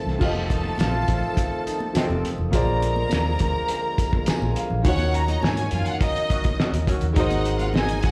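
Lush 1970s-style soul at 104 BPM in 4/4, cinematic and smooth, heard as a live gig through a venue's PA with club reverb in this short cut from a longer piece. A muffled, cloth-damped drum kit with a fat snare and a round, foam-muted electric bass sit up front. Very quiet congas and a jingly tambourine add percussion, a boxy grand piano accompanies and plays a fill at 4.0 seconds, and a lightly overdriven tonewheel organ with slow rotary speaker holds chords in the background. A symphonic string section carries a bowed second line throughout, a mellow horn section adds stabs with octave doubling, and an expressive violin section takes the melody from 4.9 seconds, with slapback echo on the strings, violins, piano and horns, over chords moving from F7 through Bb7 and Ebm7 to Ab7.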